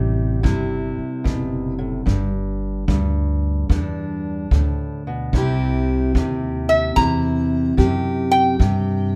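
A fingerpicked steel-string acoustic guitar with warm, fresh strings and a woody, plucked upright bass open this short, gritty country blues cut, with a distant, roomy kick drum played with brushes joining at 0.4 seconds. The swaggering, swung groove moves through a few plain chord changes before a nasal, metallic lap resonator guitar slides in up front with the melody at 6.7 seconds. The sound is dry and close, with little reverb.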